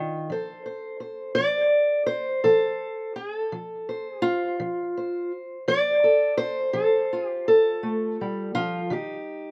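Acoustic country blues in a slow, swaggering 12/8 with a gritty edge, this brief excerpt features a lone fingerpicked steel-string parlour guitar, dark, woody and boxy with the dull bite of old strings, sitting up front in a dry outdoor recording as the harmony moves from F to Eb near 8.9 seconds.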